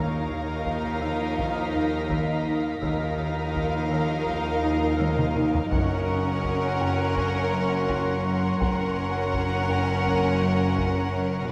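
A steady 83 BPM pulse in straight 4/4 drives this tense, mysterious suspense cue from a cinematic film score, heard as a short cut from a longer piece. A woody, dry folk marimba with medium mallets carries a rustic riff in the background from the start, while a distant taiko ensemble with heavy sticks enters at 0.3 s and plays a drum fill from 5.0 to 5.7 s, just before the harmony moves from Ebsus2 to Gb at 5.7 s. Bowed sul tasto strings float above: a soft-attack violin section sings the melody between F5 and Gb5, a clear violin section holds a second line on Bb4, a viola section fills in the accompaniment, and a high violin texture glimmers in the background until 11.1 s. Underneath, a dark double bass section and a cello section in the background share the bass line, joined by very quiet, tight French horn chords. A shimmering, ethereal ambient pad with a granular, detuned sheen adds very quiet sustained chords, and the whole cue sits in the wet bloom of a scoring stage reverb.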